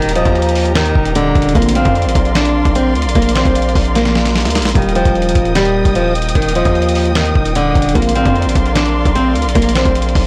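A fingerpicked flamenco guitar carries the melody of this wistful yet triumphant trap cut from the very start, its up-front line trailed by digital delay, while a barely audible electronic downlifter sounds until 1.6 seconds. Beneath it sit a very quiet felt-muted upright piano with a soft, intimate tone and a distant, woody symphonic string section holding lush, dark bowed chords with vibrato. The beat runs at 150 BPM in a half-time 4/4 feel, driven by a gritty, compressed soul sampler-style kit with a thumpy kick, fat snare, hi-hat and finger snaps, plus a heavy, aggressive 808-style bass saturated with distortion. A drum fill arrives between 4.0 and 4.8 seconds. From 0.2 seconds a soft, breathy, flute-like synth lead adds a second line in the background, treated with chorus and delay. The harmony in Bb major alternates between Eb and Bbadd9 under light digital ambience, and the whole mix sounds blown-out and overdriven.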